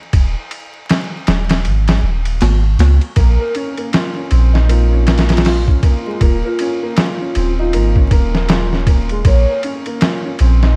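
A dark, dry production with a layer of vinyl crackle sets a hypnotic, smoky trip hop mood in this short cut from a longer piece, over a lazy, swung groove. A gritty, pitched-down sampler-style drum kit sits up front with a thumpy kick, a medium-tuned snare, hi-hat and ride cymbal, sounding compressed and tape-warm. Beside it, a soft 808-style bass supplies deep, round sine tones with a fast attack that decays away. At 3.2 seconds a felt-muted upright piano enters with mellow, boxy arpeggios of short sustain, its action noise audible and its notes trailed by digital delay. At the same moment a pure, breathy sine lead appears in the background, gliding and warbling with vibrato, subtle chorus and dub echo, before dropping out at 9.6 seconds. The harmony moves from Ebsus4 through Bbm and Eb5 and back to Bbm.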